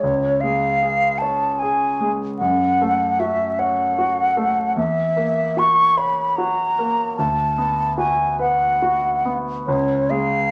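Moving in a rubato 6/8 at 50 dotted-quarter beats per minute, this yearning, solemn romantic classical fragment in F# minor, tuned to A4 = 438 Hz, pairs a concert flute with a grand piano for 10.5 seconds. The flute carries the melody up front with an airy, hollow tone, tongued notes and vibrato, while the clear, open piano accompanies below with deep bass through a progression of C#, F#m, F#7/E, Bm/D and back to C#. A moderate large-studio reverb and a layer of vinyl crackle surround the pair.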